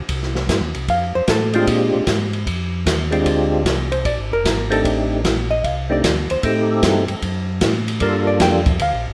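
A fat, percussive tonewheel organ carries the melody from 1.5 s, its third-harmonic percussion and key click cutting through a slow rotary speaker and chorus vibrato. This is a bluesy, soulful soul jazz organ trio clip at 152 BPM in 4/4, with a swung eighth-note feel and a rough home-demo sound. A second, mellow and round tonewheel organ handles the bass line, also turning through a slow rotary speaker. A dark, clean hollow-body electric guitar enters at 0.9 s, picked and featured in a solo role alongside the organ lead. An open acoustic drum kit sits up front with a punchy kick, medium-tuned snare, hi-hat and ride, roughened by vintage 12-bit sampler grit in a small room. Moderate studio reverb surrounds the band as the harmony moves from Cm through F69 and Bb13 to Am7b5 and Gm7.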